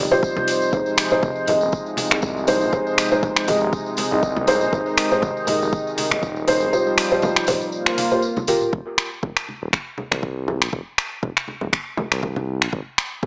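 Warm and hypnotic, this afro house excerpt in F minor rides a swung 120 BPM groove. A felt-muted upright piano plays mellow, dark stabs with audible action noise and tape echo over a warbling, wave-folded analog pad moving through chords such as Eb69, Fm7 and C7sus4. A smooth sawtooth synth bass pumps beneath them, alongside a tape-warm electronic kick, a produced afro-pop kit of finger snaps, metallic hats and toms, thick-skinned low-tuned congas and a jingly, dry tambourine. After a drum fill at 8.4 seconds, the piano, pad and tambourine drop out, leaving bass and percussion on an F5 chord in a lightly reverberant, small-speaker sound.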